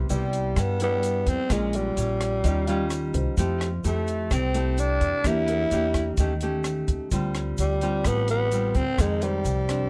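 Fingerpicked, full-bodied nylon-string guitar and a woody, thumpy pizzicato upright bass open this sophisticated, romantic bossa nova, joined at once by an up-front tenor saxophone whose breathy, raspy, growling subtone and scooped notes carry the melody over a dry cocktail drum kit with a punchy kick, hi-hat and rim click, a grainy tube shaker in the background, and an intimate baby grand piano with audible action noise that drops out at 6.4 seconds and returns at 9.2 seconds, all captured with close, detailed microphones and little reverb.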